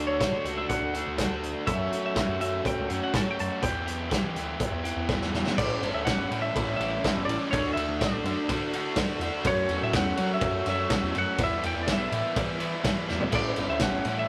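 Jangly and wistful, this indie rock excerpt in a straight 4/4 pairs a clean, twangy twelve-string electric guitar melody with a bright, double-tracked overdriven guitar riff, a growling picked bass with overdrive and a punch of its own, and a loose, gritty, up-front drum kit with a rolled-off top that fills at 5.1 seconds as the chords move from Dmaj7 through F#m and Em to A7sus4, all captured in a rough rehearsal-room recording with moderate studio ambience.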